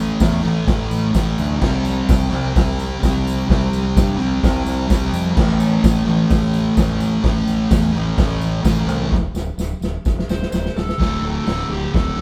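A thick, double-tracked fuzz guitar riff sits up front from the start alongside a growling, overdriven fingered bass, while a vintage acoustic kit with a boomy kick and dark cymbals and a jingly tambourine in the background push this gritty, swaggering garage rock cut from a longer piece. A drum fill arrives at 9.1 seconds, and a dark slide guitar with overdrive enters at 10.3 seconds for the closing bars. The band sounds live in one stone room, with a pumping room sound on the drums and faint mains hum.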